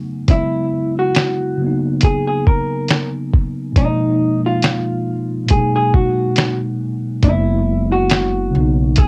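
A hazy, muffled cassette-home-recording feel wraps this nostalgic lo-fi hip hop excerpt, where a mellow tine electric piano opens alone before a dark, picked hollow-body jazz guitar melody and a thumpy, pitched-down sampler drum kit with finger snaps and a fat snare enter at 0.3 seconds, and a woody pizzicato upright bass joins at 7.2 seconds over jazzy seventh chords.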